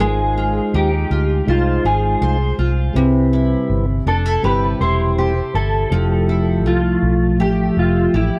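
Hazy and dreamy, this short cut from a longer indie bedroom-pop piece drifts at 81 BPM in C major, where a slightly broken-up, lo-fi electric guitar through a small old amp carries the melody with ensemble chorus and tape echo over a picked dreadnought acoustic guitar awash in lush chorus and warbly pitch drift, a soft flute-like tonewheel organ with key click, slow rotary speaker and cassette tape colour, and a round, punchy, foam-muted fingered electric bass, all in a dry room as the chords move from Ab6 to Cmaj7 at 3.0 seconds and Fmaj9 at 5.9 seconds.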